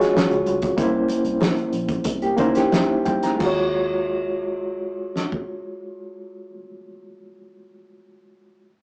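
This short cut from a longer piece has a rough rehearsal-room character, with saturated, small-speaker sound and a moderate small-room reverb. It is lush 1970s-style soul in Eb dorian, bittersweet and smooth, in a straight 4/4 at roughly 86-98 BPM and slowing down through its opening 3.4 seconds. An overdriven reed electric piano sits up front, gritty and barky with a fast tremolo, voicing a rootless Ebm11 that moves to C7b9 before returning to Ebm11. A soul drum kit with dark cymbals, a fat snare and a tight kick plays alongside very quiet, thick-skinned congas and a dark, foam-muted fingered electric bass with a round, punchy tone. A clean, mellow electric guitar adds a brief riff at 2.2 seconds, and the electric piano carries on alone once the bass stops at 6.5 seconds.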